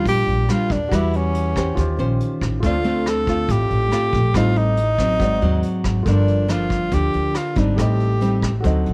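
A straight 4/4 bossa nova groove at 140 BPM sets a wistful, melancholic tone in G minor. A vintage brush drum kit plays hi-hat, punchy kick and rim clicks, recorded in a studio room with a rolled-off top. Pizzicato upright bass on steel strings enters at 0.1 seconds with a woody bottom, while a fingerpicked nylon-string guitar with old strings sits up front, offering warm, classical-style accompaniment. Leading the melody, a breathy tenor saxophone plays in subtone with vibrato and scooped notes, mellow and jazz-inflected, standing up front as the soloist until 8.6 seconds. A clear, polished grand piano stays in the background, and the harmony moves through rich chords such as Ebmaj9, Dm7, Ab7#11 and Gm7, all captured dry and close-miked for fine detail in this section cut from a longer piece.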